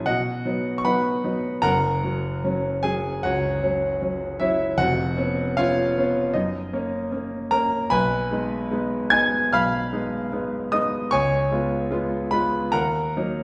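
Set at 76 BPM in 4/4 with a flexible rubato feel, this romantic character piece for solo piano unfolds unhurriedly, tuned slightly low with A4 at 438 Hz. The mood is warm and lyrical, carried by a concert grand whose deep bass and smooth, vintage tone sit up front even as the whole is heard from further back in a large studio with a wet reverb. The piano spans a broad range from E#1 up to G#6 across the full 13.4 seconds, playing alone from start to finish. The harmony moves from B to F# and through C#7/E#, G#m/B and C#7 before settling on D#m at 12.7 seconds. This brief passage is cut from a longer piece and holds to a single section throughout.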